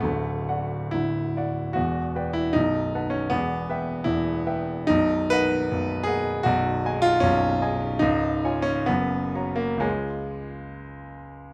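A polished, up-front baby grand piano opens this hopeful, lyrical romantic character piece, playing alone in 2/4 with a flexible rubato that moves between 59 and 82 BPM across a range from B0 to A#5. The harmony drifts from D through E minor and B major colors toward C# and F# by 9.8 seconds. Close, detailed microphones and light reverb keep the instrument warm and present in this short passage taken from a longer work.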